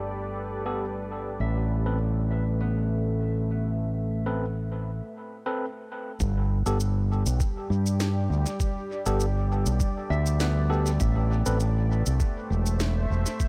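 Deep and hazy, this ambient dub excerpt at 100 BPM sets a moody, detuned sawtooth pad and a growling, overdriven fingered bass up front against gritty, barky electric piano stabs treated with dub echo and a ringing background harp under a filter sweep, before a break at 5.0 seconds gives way at 6.2 seconds to a muffled, thumpy pitched-down kick with an electronic shaker and woody snare, all in a dry room.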